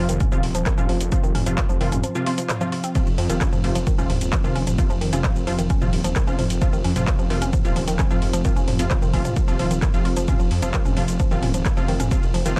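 A punchy, small-room electronic kick anchors this relentless peak-time techno excerpt at 131 BPM, where a menacing, saturated detuned saw bass, a woody wave-folded pluck riff with digital delay, aggressive bright rave stabs with built-in reverb, and a mellow background analog drone all pump against the sidechain, while a drum kit of metallic hats, handclaps, ride, shaker and toms drives on and a very quiet electronic swell sounds from 2.4 to 3.0 seconds within the break.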